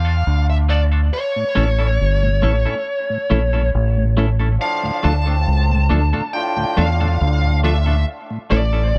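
A slow, straight 4/4 reggae groove at 69 BPM in D harmonic minor shifts between Dm and A in a hypnotic, meditative mood, anchored by a round, punchy, up-front dub bass, while a distorted, bluesy overdriven lead guitar carries the melody through dub echo, a cup-muted trombone section adds a veiled, distant second line, a clean, compressed semi-hollow guitar fills in the accompaniment, and a mellow tonewheel organ with vibrato sits in the background, captured in a dry, close 1970s-style studio sound, with a break at 8.1 seconds in this short cut from a longer piece.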